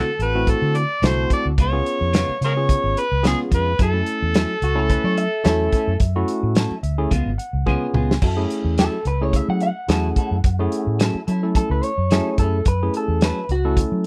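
Soulful and smoky, this straight-eighth soul blues cut from a longer piece moves at 108 BPM in F# minor with a light sixteenth-note swing. An overdriven, gritty harmonica carries the melody up front, with light vibrato, tongue slaps and scooped notes, before it drops out at 6.0 seconds. Beneath it, a bright, barky tine electric piano played through a combo amp supplies the accompaniment and adds a fill just before the change. A clean, compressed electric guitar dressed in lush chorus plays stabs and then takes a solo from 8.2 seconds. A dark, slightly broken-up guitar through a small old amp adds a second line from 4.6 seconds. The foundation comes from a round, punchy, foam-muted fingered bass and a dry, saturated soul drum kit with a fat snare, tight kick, dark cymbals and a pumping room, all sitting close in a mix with little reverb.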